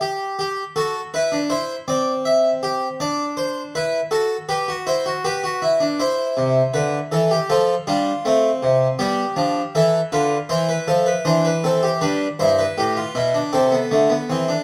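This is a baroque-style classical fugue in three voices for solo harpsichord, elegant and stately in mood, moving in a steady, straight 4/4. The harpsichord plays alone from the first note to the last at 14.6 seconds, spanning G2 to E5. It is a French-style instrument with two sets of strings, close-miked and up front, with a full, plucked and dry tone. Around it, a moderate stone room adds reverb that lingers for about 1.1 seconds. The harmony circles through G, C, D7, F and G7 before settling on C/E, and at 12.0 seconds a new section opens on Em7/G just before the recording, cut from a longer piece, breaks off.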